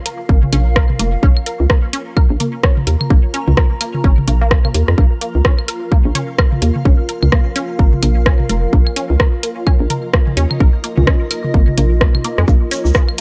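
Minimal techno with a sparse, clinical mood, this short cut from a longer piece rides a swung 4/4 groove. A punchy, tape-warm electronic kick sits up front alongside a booming analog drum machine whose metallic hi-hats and rim clicks tick through the bar, while overdriven electronic toms and claves add a gritty edge. A hollow, bouncy FM bass with a fast, decaying attack pumps against the kick, and a squelchy, resonant blip pluck riff, treated with phaser, subtle chorus and tape echo, pumps in the same way. Around them, a cloudy granular pad drifts and evolves with its own reverb and a sidechain pulse. A grainy tube shaker slips in only near the end at 12.5 seconds, and the whole dry, hardware-recorded mix keeps the sound close and unadorned.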